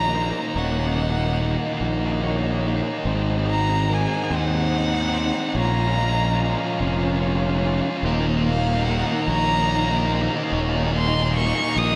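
Post-rock in a slow, swaying 6/8, this melancholic, brooding build-up is cut from a longer piece and moves through Ebm7, Ab7 and Bbm7 chords under a lush hall reverb that gives it a big arena sound. A dark, woody solo violin carries the melody with vibrato and tape echo, while a veiled, con sordino string section holds very quiet, distant chords beneath it. Up front, a sludgy overdriven guitar riff and a growly, punchy fuzz bass drive the low end with slapback echo on the guitar. Threaded through are a very quiet, twangy clean guitar fingering arpeggios and a slightly broken-up guitar through a small old amp, its higher arpeggios sitting in the background under slapback and tape echo. At 8.1 seconds a thick, distorted fuzz guitar joins in the background with its own riff, adding weight as the passage builds.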